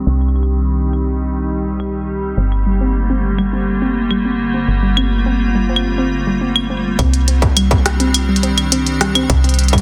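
Light reverb and a digital ambience surround a dense, heavily limited master with a low-pass filter on this cerebral, eerie IDM excerpt in straight 4/4. A crystalline glass pad, filter-swept until 7.0 s, holds detuned chords over a round, dark FM bass with tube saturation, while a glitchy kit of claves, clicky hats and rim clicks with tape echo sits up front. A warbling, lo-fi sawtooth pluck adds chorused, mellow arpeggios from 2.4 s, and a distorted electronic kick joins at 7.0 s as the harmony moves from Cm through Gmadd9 to Cmadd9.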